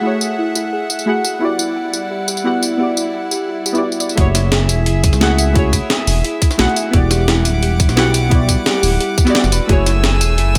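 In straight 4/4 at 174 BPM, a gritty, compressed breakbeat kit with hi-hat, medium-tuned snare and tambourine sits up front from 0.2 seconds in this melancholic, dreamy liquid drum and bass cut in F# phrygian. Deep, full-bodied chord stabs colored by chorus, cassette tape and delay, a floating chamber string section bowed sul tasto under sidechain pumping, and a ringing harp-like synth pluck playing arpeggios through chorus, phaser and delay move between F#m9 and Em9 from the start. At the drop at 4.2 seconds a tight, layered electronic kick and a smooth, dark, gliding bass arrive, the bass pushed up front in a lightly reverberant mix.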